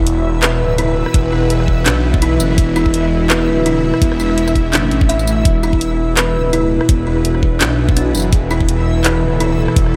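A heavy, tense stretch of half-time drum and bass, cut from a longer piece, opens at once with several layers together. A nasal, string-like drone holds sustained chords with a slow attack, vibrato and its own reverb, pumping against the sidechain. Beside it, a buzzing kalimba plays woody, airy arpeggios roughened by vintage 12-bit sampler grit and trailed by a diffuse ambient delay. Underneath, a thick, swirling detuned saw bass sits up front, saturated and coloured by a phaser. A reversed, granular texture swells softly in the background on a single high note, carrying reverb and ensemble chorus. The drum kit of handclaps, hi-hat, rim click and tambourine arrives at 0.1 seconds, a knocking, layered electronic kick joins at 1.1 seconds, and a plate reverb soaks the whole mix in a dreamy digital ambience.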